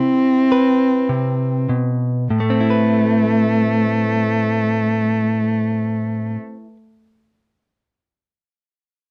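Intimate and heartbroken, this short excerpt of slow folk in A minor, tuned to A4 = 441 Hz, moves at 49 BPM in a straight 4/4 and eases into a slowdown over its first 2.3 seconds as the harmony passes from Cmaj7 to Amadd9. Up front, a single bowed cello carries the melody between A3 and C4 with vibrato, portamento and a nasal, boxy, expressive tone, falling silent at 6.3 seconds. Beside it, a clean, compressed electric guitar recorded direct picks a warm accompaniment until 6.8 seconds, all captured in a dry, close 1970s-style studio sound with light reverb.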